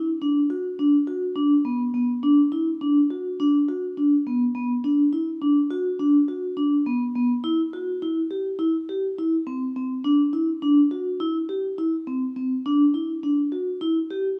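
Driving and tense, this progressive instrumental excerpt in 9/8 at 207 BPM counted in eighths sets a solo vibraphone, played with soft mallets, up front in B phrygian, its metallic, ringing tone mellow, warm and airy with medium motor vibrato and bathed in moderate spring reverb for 14.2 seconds.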